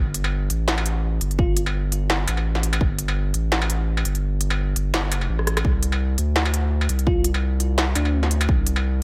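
Half-time drum and bass with a dark, spacious mood: a thick, saturated sub bass sustains up front throughout the 9-second cut while a clanging, crisp industrial drum kit of hi-hat, rim click, snare and struck metal plays up front, a heavy tape-toned electronic kick enters at 1.4 seconds and drops out before returning at 5.6 seconds after a drum fill, and a sparkling, bell-like FM electric piano with chorus and delay glints briefly in the background as the harmony moves from Gsus2 to Csus2.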